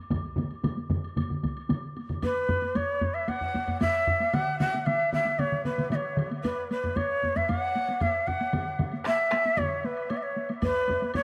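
Bathed in a huge ambient reverb, this driving, powerful Japanese taiko ensemble piece moves at 114 BPM in a straight 4/4, cut from a longer work. Heavy-stick taiko layers, one close and dry and the others in small and live rooms, pound on with a distant woody woodblock, the live-room layer falling silent at 9.7 s. A compressed, saturated hard-stick taiko sits in the background, drops out after 1.6 s and returns briefly at 10.6 s. At 2.2 s a breathy, mellow bamboo shakuhachi enters up front, its tongued chiff and unsteady vibrato carrying a melody between B4 and F#5.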